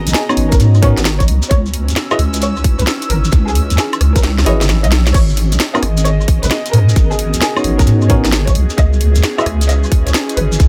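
A deep, wobbling bass sits up front through this late-night, bouncy two-step garage excerpt, its dark, saturated tone thickened with chorus beneath a tight electronic kick at 132 BPM with a swung 16th-note feel. The garage drum kit adds a cracking snare, hats, rim clicks, woodblock and crash cymbal, touched with analog delay, while a grainy shekere sits in the background. Bell-like tine electric piano stabs ring out bright and clean with their own delay, and a soft-attack violin section carries a pure, floating, bowed melody. Two pads fill the space: an ethereal, mellow one in the background with ensemble chorus, reverb, tremolo and sidechain pumping, and a breathy, warbling vintage pad that also pumps. The harmony moves between G#m11 and C#m11. The kick drops out for a drum fill from 4.2 to 5.1 seconds, and the whole mix carries an echo-heavy digital ambience.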